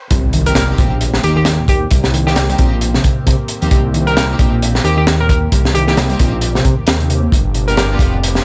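Swaggering and funky, this short breakbeat cut from a longer piece rides a swung sixteenth-note groove that settles into a minor-seventh chord before turning to a dominant chord near 7.3 seconds. Up front, a crunchy acoustic breakbeat kit hits with a punchy kick, a high-tuned snare and hi-hats, its gritty, saturated sound rolled off at the top, while a dark, detuned saw bass rumbles deep underneath with a beating, unison tone. A reedy, worn electric piano plays a riff in the background, slightly out of tune and tinged with tube saturation and delay, as a very quiet phased analog pad swirls and warbles with vintage sustained chords. From 0.5 seconds a hollow, bouncy square pluck carries the melody through chorus, delay and a telephone-like filter, alongside lush, bowed symphonic string stabs with vibrato echoing softly behind it. A very quiet electronic impact marks the drop at the opening, and the whole passage sits in a small room ambience.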